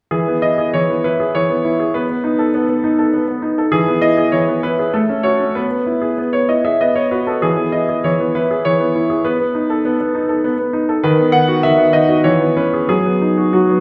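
A graceful, elegant classical-period piano sonatina in E major, heard as a short cut from a longer piece, moving at 99 BPM in 3/4 with a rubato feel. A bright concert grand plays alone from 0.1 to 13.8 seconds, its brilliant, present tone carrying deep bass and long sustain up front, while the harmony moves mainly between E and B7 before settling on B/F# at 12.9 seconds. The wet recital-hall reverb places the listener further back in the room.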